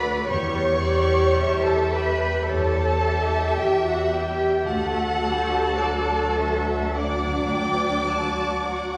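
A rich, even cello section shares the bass with a focused double bass placed up front in this tender, lyrical excerpt from a slow romantic movement for string orchestra in D major at 54 BPM with rubato, where a clear, intense violin section carries the melody above a smooth-topped second violin line and a distant viola accompaniment, every section bowed with vibrato and heard from further back in a reverberant scoring stage as a C#dim/E chord gives way to D at 4.7 s.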